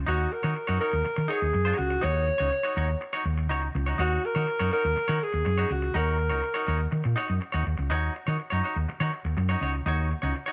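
A dark, round hollow-body bass with tube saturation opens this danceable, celebratory disco excerpt at 123 BPM, quickly joined by a clean, compressed semi-hollow guitar and a mellow, breathy alto saxophone with light vibrato that carries the melody over a single Ebm7 chord until 6.9 seconds, all set in a moderate spring reverb and small room ambience.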